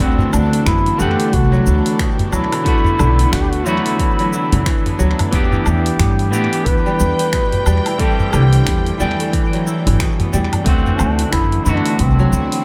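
Swung sixteenths in 4/4 carry this hypnotic organic downtempo excerpt, where a deep electronic kick, a layered deep house kit of finger snaps, hi-hat, shaker and woodblock, and a small, dry udu support a woody, thumpy pizzicato upright bass with sidechain pumping, while crisp, ringing kora arpeggios and a distant, vibrato-laden duduk singing scooped folk-style notes drift through dub echo and shimmer reverb over clean picked electric guitar and a smooth, distant bowed string section, both pumping in an echo-heavy mix.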